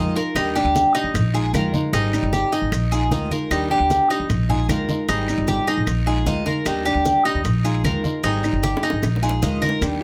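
A moderate studio ambience surrounds this relaxed, danceable excerpt of Cuban son and guajira, played at 152 BPM in a straight 4/4. Up front, a dark, fingerpicked flamenco guitar with fresh strings and audible finger squeak carries the accompaniment, while a bright, metallic Cuban tres picks arpeggios on its doubled strings, some tuned in octaves. A pizzicato upright bass with steel strings gives a dark, woody low end, also close in the mix. Behind them sit low-tuned, thick-skinned congas, tight high-tuned bongos struck with hard hands, a raspy guiro, grainy, mellow maracas and very quiet claves, all entering within the first half-second. The harmony cycles through Ebmaj7, Bb7sus4 and Abmaj7, and a drum fill from 8.6 to 9.8 seconds closes the passage as the tres drops out.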